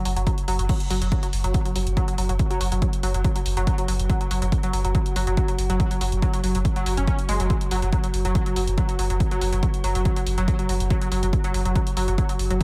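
A straight 4/4 pulse at 141 BPM drives this dark, hypnotic stretch of peak-time techno, cut from a longer piece, with an overdriven, up-front electronic kick arriving at 0.3 seconds alongside a punchy analog drum machine whose hi-hats and crash cymbals pump against the sidechain. A tight, nasal sawtooth riff with a filter pluck, chorus and tape echo spans F#3 to C#4 over a deep, thick, saturated sub bass anchored on F#1 under a low-pass filter, both pumping in time, as the drop lands at 0.7 seconds. From 1.3 seconds an eerie, metallic FM drone with a warbling, vintage tone sits mellow in the background, swathed in chorus and its own reverb, within an echo-heavy digital ambience.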